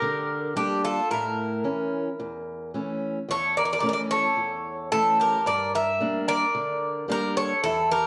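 Greek folk at a straight 110 BPM in 4/4, moody and brooding, this short excerpt sets an up-front bouzouki melody with bright, metallic strings, some of them octave-doubled, over a second bouzouki line and a boxy parlour steel-string guitar accompaniment, moving from G minor to A at 1.1 seconds and back at 5.5 seconds, all bathed in a wet echo-chamber reverb with small-room ambience.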